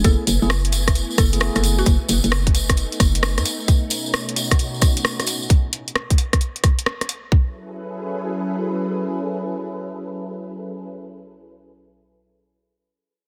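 Soulful, skippy two-step UK garage at 132 BPM in F# dorian with a swung 16th feel, where a woody, round FM mallet-like pluck with chorus and delay and clean tine electric piano stabs with delay sound only briefly, both stopping by 1.9 s, while a silky, dark string machine with ensemble chorus and sidechain pumping sustains F#m11, B9 and Amaj7 chords until 10.9 s over a hollow, bouncy FM bass that drops out at 3.4 s, a tight, up-front electronic kick, a garage kit of hi-hats and rim clicks with a soft-clipped snare, and a jingly, compressed tambourine, all set in digital ambience under a dense, heavily limited modern master.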